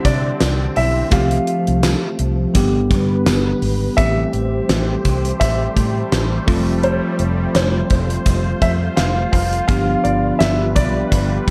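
At 84 BPM in 4/4 with a light swing on the sixteenths, a gated 80s drum kit sits up front, its fat snare, tight kick, hi-hat and tambourine ringing in a bright stone room. This is a romantic, nostalgic slice of 1980s-style pop, cut from a longer piece and soaked in a dreamy plate reverb. A foam-muted, round and punchy fingered electric bass anchors the low end, while a bell-like tine electric piano plays clean accompaniment beneath a sweeping, detuned sawtooth pad that slowly evolves through chorus. A dark, intimate baby grand carries the melody with delay, its short sustain and audible action noise giving it a close, natural feel. A hollow-body jazz guitar adds a picked second line with delay in the background before stopping at 3.2 seconds. The harmony drifts over suspended and add9 colors on a C pedal, then opens into a new section at 4.0 seconds, moving from Am7 through F to a closing G7.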